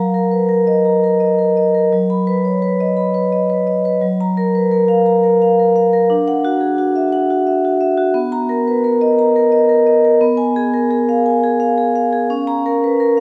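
A solo vibraphone played with medium hard mallets and the motor off opens this contemporary classical passage, its metallic, ringing tone sitting up front in a church reverb with a long 3.6-second tail. Moving in a rubato 6/8 at about 58 BPM in F# major, the warm, flowing harmonies drift from F#6 through Badd9/F#, F#maj7, Dadd9 and Bmaj7 before settling on Db5 near 12.3 seconds. The dark production gives the airy bars a warm glow across this short section cut from a longer piece.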